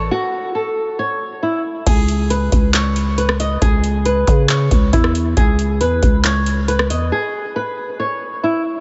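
Hard-hitting, brooding trap hip hop at 137 BPM in a half-time feel and C# minor, cut from a longer piece, where a dark, fingerpicked flamenco guitar melody softened by subtle chorus, a low-pass filter and diffuse ambient delay sits up front over a growling, buzzy 808-style bass, joined at 1.9 s by a booming, tape-warm analog drum machine with a deep kick, metallic hi-hats, handclaps, rim clicks and crash cymbal, until a break at 7.1 s leaves the guitar alone in light reverb through 8.6 s.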